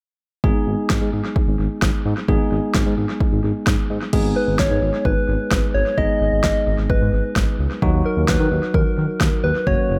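Cool and nocturnal, this synth-pop excerpt moves at 130 BPM in a straight 4/4. Opening on Abm and shifting to Ebm at 7.8 seconds, a punchy deep house kit with a fat snare and analog delay sits up front over a smooth, sawtooth-edged synth bass and bell-like tine electric piano chords. A round, gentle FM lead with chorus and delay enters at 4.4 seconds, all set in a moderate spring reverb that gives the mix an echo-heavy depth.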